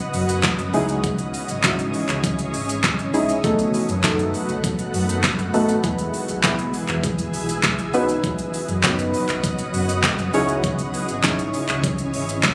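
Captured on a phone in a club-like room, with light digital ambience and a faint mains hum underneath, this excerpt is driving, bittersweet dance-pop in C# minor at 100 BPM, with chords moving through Badd9, C#madd9, B7 and E. An up-front pop drum kit, electronic and layered with a knocking kick, fat snare, crisp hats, handclaps and shaker, runs alongside a deep, dark chord stab carrying chorus and a filter sweep. A full sine-and-triangle sub bass with an octave and an ethereal, detuned pad with octave-up shimmer, granular texture and its own reverb all pump with sidechain compression.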